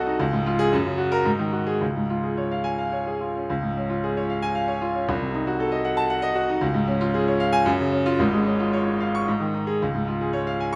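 A brilliant, up-front baby grand piano plays alone through this heroic, sparkling 10.8-second passage from a longer virtuoso classical piano study in D-flat major, moving in a rubato 3/4 at roughly 106-118 BPM across a range from Ab1 to Db6, with a second section beginning at 3.5 seconds that darkens briefly on a Cdim7 chord before returning home to Db, all bathed in the wet reverb of a recital hall.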